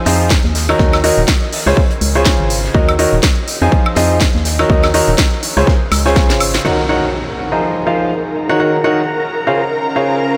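A swung 4/4 house groove at 123 BPM drives this bittersweet, energetic piano house excerpt in Eb dorian, with a punchy electronic kick up front, a crisp, filtered house kit with a cracking snare, hats and woodblock, and a very quiet, smooth soul kit adding its own hi-hat, shaker and snare underneath. A clear baby grand piano carries the riff from start to finish, intimate enough that its action noise comes through, pumping against the kick and colored by a low-pass filter and tape echo. Beneath it, a hollow, organ-like FM bass with a fast, decaying attack and tube saturation moves through the Fm7, Ebm7 and Dbmaj7 changes. The kick drops out at 6.3 seconds, and the other drums and the bass follow at 6.6 seconds after a short fill and a band accent, as an electronic impact lands and a shimmering vintage string machine takes over sustained violin chords under a filter sweep. From 7.4 seconds a warbling, nostalgic tape-like pad sits in the background with chorus, phaser and its own reverb, and the whole mix floats in a long, dreamy ambient reverb.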